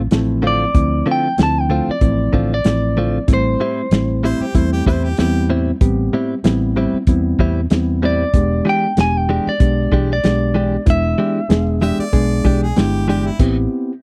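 A reedy, slightly out-of-tune electric piano with a light overdrive opens on a Dm7 chord, joined at once by a dark, foam-muted fingered bass with a round, amped tone. This is a smoky, brooding soul blues in A minor at 95 BPM, played with straight eighths and a gentle sixteenth-note swing. The dry, muffled soul drum kit sits up front with dark cymbals, a tight kick, a medium-tuned snare and a rolled-off top, and it comes across as the loudest part. A bright, compressed guitar recorded direct plays picked stabs, while a second, clean picked guitar carries the melody high above. A pop-style harmonica with light vibrato and scooped notes adds a quieter second line in two short spots, first at 4.2 seconds and again from 11.8 seconds. The harmony moves from Dm7 to Am7 and then to a tense E7#9 before settling back on Am7, all captured in a close, 1970s-style studio sound with little reverb.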